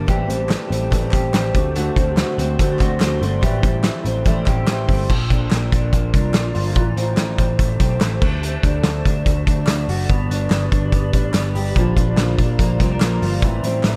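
A loose, up-front indie drum kit drives a straight 4/4 at 144 BPM, its punchy kick, medium-tuned snare and dark cymbals set in a pumping studio room, while a group handclap with a hollow, band-limited vintage sound sits in the background. Underneath, a picked electric bass gives a round, foam-muted low end. This short cut from a longer piece of jangly indie pop feels youthful and nostalgic, moving from Am7 and D7 into a passage that touches Bb, D and G before settling back on Am7. An electric guitar through a small old amp plays arpeggios throughout, slightly broken-up and lo-fi, coloured by subtle chorus and tape echo. A full-bodied dreadnought steel-string acoustic guitar, complete with finger squeak, picks an accompaniment until 5.1 seconds and returns at 11.8 seconds, and a mellow, blurred granular cloud pad holds evolving chords high in the background with its own built-in reverb. 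Otherwise, the mix carries very little reverb.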